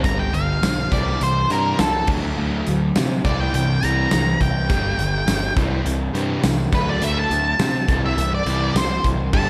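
A dark, sludgy overdriven guitar riff, a punchy fuzz-laden picked electric bass and a big acoustic rock drum kit with a fat snare, crash, hi-hat and tambourine kick off this driving, sunny classic rock cut, with a background fuzz guitar heard at the start and again at 9.3 seconds. From 0.1 seconds an up-front octave-fuzz lead guitar solos over the G, C and D changes for the whole passage, its distorted tone carrying a slapback echo. The mix has a big arena sound, with lush hall reverb around smooth drums whose top end is rolled off.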